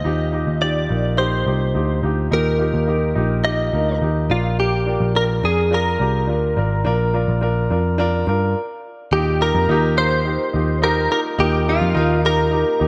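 A clean electric guitar carries the melody from the first moment, recorded direct and picked with a compressed, warm clarity, shimmering through analog chorus and tape echo. Beneath it, a grand piano plays polished accompaniment with a short sustain, while a muted picked electric bass sits up front with a dark, round, punchy tone. This is hopeful, uplifting piano-driven pop at 106 BPM in a straight 4/4, moving from Ebadd9 to Bb and back. A brief stop at 8.6 seconds clears the air before the next section begins at 9.1 seconds, returning to Ebadd9. A moderate plate reverb soaks the whole dreamy mix, and the clip is cut from a longer piece.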